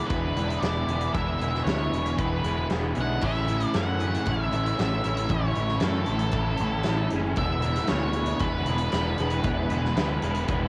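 Shoegaze and dream pop rock with a wistful, blissful mood, cut from a longer piece and steeped in cassette tape, vinyl crackle and small-room ambience. A dark octave-fuzz lead guitar with tape echo carries the melody over a shimmering twelve-string acoustic playing arpeggios, while crunchy, distorted and hollow-body overdriven electric guitars stack riffs in the background across changes from E7 to Amaj7 and back. A growling, punchy picked bass sits up front from 0.1 seconds alongside a huge arena drum kit with a fat snare, punchy kick, crash and hi-hat.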